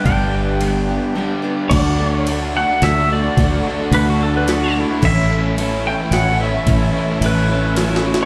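A bright pedal steel guitar, played with fingerpicks and slide and coloured by slapback echo and digital delay, opens this hopeful, jangly folk rock and heartland rock excerpt with a short solo before settling into a second line. At 1.7 seconds a dark, scooped lap steel takes the melody with slide and volume swells, while the pedal steel carries on in its own swelling voice. Underneath, a double-tracked overdriven guitar plays a crunchy riff, a dreadnought acoustic is picked in the background, and a reedy musette accordion holds shimmering chords. A round, foam-muted fingered bass sits up front, and a gritty, pitched-up sampler-style kit with a thumpy kick and high-tuned snare keeps the steady 3/4 feel, ending on a drum fill at 7.8 seconds. The whole piece sounds like a live gig heard through the venue's PA, wrapped in club reverb.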